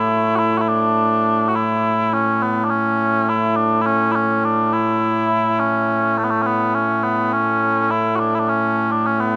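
Proud and stirring, this short cut from a longer Scottish traditional pipe tune moves at a steady 104 BPM in straight 4/4, set in A major with a slightly raised tuning of A4 = 444 Hz. A set of mellow small bagpipes plays solo for the full 9.4 seconds, sitting up front in the mix. Their tone is sweet and continuous, carrying vibrato across a range from A2 to F#4. A tape echo trails behind the pipes, and a moderate plate reverb with a 3.3-second decay gives the sound a lingering halo. The overall mix has the rough, unpolished character of a home demo.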